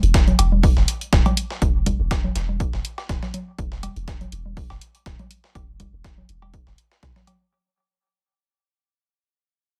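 Sparse and cool, this minimal techno excerpt from a longer piece rides a lightly swung 4/4 groove and fades out across its 7.5 seconds. An up-front, deep sine sub bass with a pitch-drop attack pumps against the punchy analog electronic kick, while a tape-warm electronic hi-hat sits forward and analog congas and cowbell trail a dub echo. A gritty, compressed breakbeat sampler-style kit adds high-passed hats and a medium-tuned snare, and the room carries little reverb.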